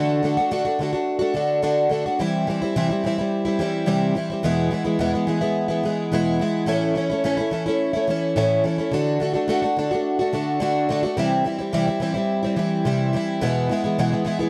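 A lone picked twelve-string acoustic guitar, plugged in and placed up front, opens this short rock fragment and carries it alone for its full 14.5 seconds. The tempo sits at 107 BPM in a straight 4/4, and the mood feels hopeful with a nostalgic tint. Its tone is dark and woody, with the boxy body and old strings of a ladder-braced instrument, while the octave-doubled courses add a shimmering edge. The part spans E2 to F#4 and moves through a chord cycle of D, C, E and A, returning to D at 8.9 seconds. Light reverb surrounds a dry, close recording that recalls a 1970s studio.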